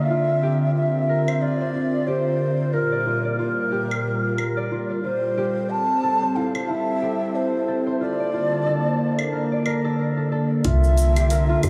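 A breathy, reedy low ney carries the melody with vibrato and tape echo in this mystical, warm organic downtempo excerpt, set over a detuned sawtooth pad thickened by chorus, 12-bit sampler grit and sidechain pumping, with a filter sweep running until 10.7 s. Thumb-plucked concert harp arpeggios ring through a diffuse ambient delay, while electronic claves, dark hi-hats and shaker join at 1.3 s with a swung sixteenth feel. At 10.6 s a round, woody FM bass and a very quiet, thumpy kick arrive, and the whole mix is soaked in a dreamy cathedral reverb.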